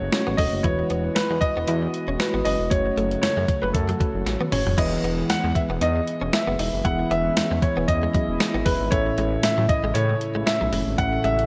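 Glossy and lightly reverberant with a digital sheen, this romantic 1980s-style pop excerpt in E major moves at 116 BPM with a gentle 16th-note swing: a natural-toned grand piano carries the melody through tape echo over mellow tine electric piano, a smooth, saturated sawtooth synth bass with vibrato, a slow-attack chorused analog pad and a clean, compressed direct guitar riff with chorus and tape echo in the background, while an up-front 12-bit drum machine with a thumpy kick, gated reverb and tambourine plays a fill from 4.3 to 4.8 s before the harmony settles onto Emaj7.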